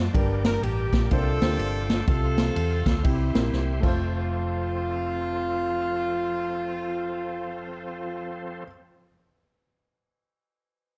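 Uptempo gospel with a soulful, uplifting swing, this short excerpt opens on gritty, overdriven tonewheel organ chords turning through a slow rotary speaker with chorus vibrato, over a round, punchy hollow-body electric bass and a dark, mellow baby grand piano whose action noise is audible. A smooth-topped horn section carries the melody up front from 0.5 seconds, while a roomy, distant big-band drum kit with a punchy kick swings beneath it and closes its part with a fill from 3.5 seconds before dropping out at 3.9 seconds. The chords move from Gm through C9sus4 and F/C to C and F, all set in light reverb with a dark production.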